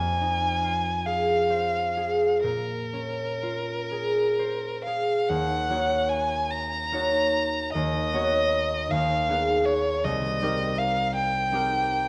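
A bowed violin and a concert harp sound together from the first moment of this hazy, mysterious impressionist classical duo, cut from a longer piece. The violin carries the melody between Bb4 and Bb5 with a rich, smooth, even tone and vibrato, sitting close and up front as a single player. Beneath it the fingerpicked acoustic harp spreads a ringing accompaniment from C2 up to Db5, also placed up front. The music moves in a slow, rubato 6/8 at roughly 40-55 dotted-quarter beats per minute, opening in Bb minor over Fm7 and Bbm9 before shifting to Eb minor at 5.3 s, where the harmony passes through Ebm7, Db9sus4/Eb, Abm6/Eb and Cm7. A moderate recital hall reverb surrounds the pair, while a worn, warbling old cassette tape quality adds a wavering pitch drift that deepens the haze.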